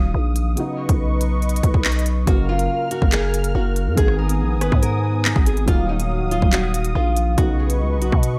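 Hip hop drill in a menacing, ominous half-time feel, this excerpt sets a dark, felt-muted upright piano with audible action noise in the background beneath a smooth, detuned sawtooth pad with chorus, while a growling, buzzy 808-style bass sits up front, joined at 0.4 seconds by overdriven drill drums with a hard-clipped kick, crisp hi-hats, handclaps and rim clicks, also up front. A fingerpicked classical nylon-string guitar with delay then enters at 2.3 seconds to carry the melody over light reverb.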